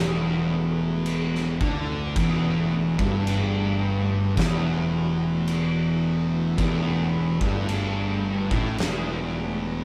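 A band playing live in one room, caught with moderate studio ambience, lays down a brooding, hypnotic stretch of stoner and doom metal cut from a longer piece. Two thick, distorted fuzz guitars grind out a low picked riff in the background, over a fuzz electric bass that sounds direct, amped and overdriven. An oversized, low-tuned acoustic drum kit enters at 1.1 s and stops at 9.1 s, its boomy kick, fat snare and dark crash cymbals saturated and gritty in a big, pumping room, while a very quiet phased string machine holds swirling, vintage sawtooth chords with a slow attack and ensemble chorus.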